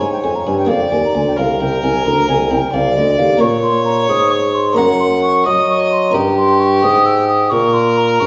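A lilting 12/8 pulse, phrased with supple rubato, carries this short cut from a baroque-style sonata movement with continuo, and the mood is serene and dance-like. A wooden baroque flute carries the melody on top, its airy tone shaded with vibrato and tongued articulation. Beneath it, a single gut-strung violin plays a close second line, its period-style sound nasal and reedy with a breath of bow. The bassoon sits up front as the bass, mellow and coloured by a light vibrato, while a buff-stop harpsichord fills in the accompaniment at a lower level with a muted, lute-like, dry pluck. All four parts play throughout the 8.3 seconds, heard from further back in a recital hall whose generous reverb surrounds the ensemble, as the harmony moves from Db through Bbm to a Gdim7 at 6.1 s.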